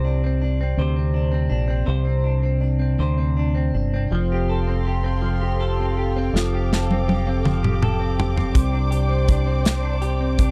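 Romantic and heartfelt, this slow pop ballad in a gentle six-eight lilt opens on a bright, twangy, double-tracked clean electric guitar, picked and compressed, over a dark, round fingered bass, both sitting up front in a dry, close 1970s-style studio sound. At 4.1 seconds a lush bowed string section enters with soft-attack sustained chords, played sul tasto with vibrato and a smooth top, as the harmony moves from Csus2 to Fadd9. A polished, airy drum kit with a punchy kick and medium-tuned snare arrives at 6.4 seconds with a fill before the chords return to Csus2.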